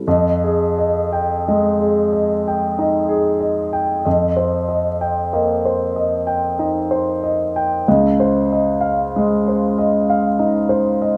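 A clear grand piano opens on an F minor ninth chord at 0.1 s, setting a nocturnal, hazy mood in this classical, impressionist solo piece. The tempo drifts slowly between 43-49 BPM in 3/4, played with a free, rubato feel in F minor. The harmony moves from the opening chord to Eb69 over an F bass at 4.1 s and settles onto a Db major ninth at 7.9 s, with the piano spanning Db2 to G5. The instrument sits up front and sounds clear and present, its long sustain letting each chord linger. A moderate recital hall reverb adds a soft halo of space around the notes, and the recording, cut from a longer work, ends at 11.2 s.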